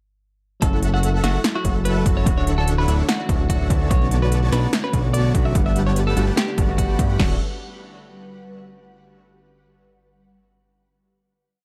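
Future bass at 146 BPM in D major with a half-time, lightly swung feel, this short, playful and lush piece drops in at 0.6 seconds with a punchy, overdriven big-room dance kit of kick, snare, crash and crisp rolling hats, a fat, up-front analog bass following the chords, throbbing syncopated stabs from a huge detuned supersaw, sidechain-pumped, bright twelve-string electric guitar repeating a riff melody through dub echo, a worn, slightly out-of-tune tine electric piano pushing rootless chords under delay, and a very quiet eight-step unison pluck arpeggio, while an ethereal, airy pad joins at 1.6 seconds over F#m7, Dmaj9, Bm9 and Gmaj7 before everything settles on a final Dmaj9 at 7.2 seconds in a dark, dry production.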